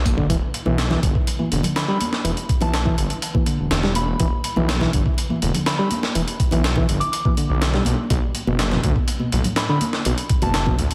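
A thick, detuned sawtooth bass sits up front, its beating, saturated tone giving this gritty, swaggering breakbeat excerpt a menacing low end. Beside it, a gritty, compressed, pitched-up sampler-style drum kit delivers a thumpy kick, a high-tuned snare and hi-hat, re-recorded in a large room. A barky, reedy electric piano carries the riff through its built-in speakers with a clean tone and digital delay, while bright acoustic congas, compressed and saturated, sit in the background. From 1.8 seconds a soft FM synth bell adds a pure, warbling melody high above, its vintage character coloured by chorus, delay and an old record sound. The harmony moves to Bm7 at 8.1 seconds, and the whole piece arrives as a dense, heavily limited modern master with light reverb and vinyl crackle.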